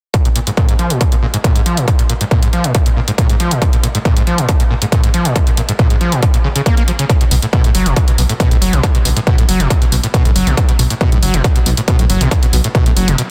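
A squelchy, resonant acid riff, distorted and chorused with delay, sidechain pumping and a filter sweep throughout, opens this relentless, driving peak-time techno excerpt together with an up-front distorted kick and overdriven electronic hi-hats. At 7.3 seconds a dark, rumbling detuned sawtooth bass joins with its own sidechain pumping, all set in light reverb within a dense, heavily limited modern master.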